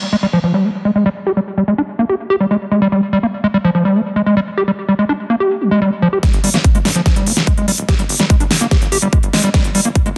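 A dense, heavily limited mix bathed in lush hall reverb carries this alien, intense psychedelic trance excerpt, where a squelchy, gritty overdriven acid bass riff with cassette-tape grain, sidechain pumping and delay rides a filter sweep until a punchy electronic kick and a big-room dance kit with a huge snare and crisp hi-hats arrive at 6.2 seconds, followed at 6.3 seconds by a tight, saturated sequencer bass, as a drum fill runs through the build-up.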